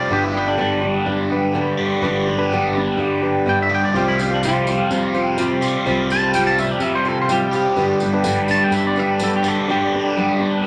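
Folk rock with a heartland rock lean, nostalgic and hopeful, this short cut moves in a straight 4/4 over G and Csus4 chords, with a clean, twangy electric guitar carrying a solo line above a picked steel-string acoustic, a double-tracked, crunchy overdriven riff coloured by phaser, and a growly fingered electric bass. A mellow, flute-like tonewheel organ with key click and slow rotary speaker holds chords in the background alongside a reedy electric piano, while a jingly, close tambourine joins at 4.0 seconds. The whole blend sits in a wet club reverb.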